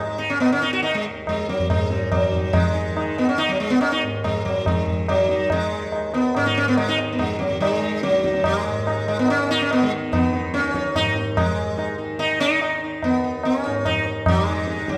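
Set in a straight 7/4 that starts at 143 BPM and gradually speeds up, this solemn, longing Hindustani classical passage in raga Malkauns on Eb is cut from a longer performance. An up-front, plectrum-plucked sitar carries the melody with a round, buzzing tone and shimmering sympathetic strings over a softly plucked tanpura drone. A low-tuned tabla with a short ring joins at 0.4 seconds, and the music moves into a new section at 11.4 seconds, all within a reverberant recital-hall space.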